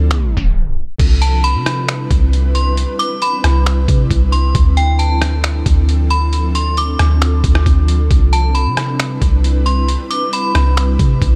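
A bright, metallic FM bell carries the melody in a high register from 1.2 s, its inharmonic, ringing tone colored by chorus, tremolo and digital delay. This dreamy, blissful piece of atmospheric cloud-rap moves at 135 BPM in a half-time 4/4 feel in C major, tuned to A4 = 445 Hz. Underneath, an ethereal, airy pad holds sustained chords of detuned sawtooth and triangle with a sub octave, softened by ensemble chorus, built-in reverb, tremolo and sidechain pumping, while a deep, round 808-style bass sits up front. A gritty, pitched-down trip hop sampler kit with a thumpy kick, hi-hat, rim click, finger snaps and crash cymbal adds tape-warm punch. A tape stop effect sweeps through the opening, from 0.1 to 1.0 s, before the harmony settles into Cmaj9 and Dm9. The mix is dry and close, and this passage is cut from a longer piece.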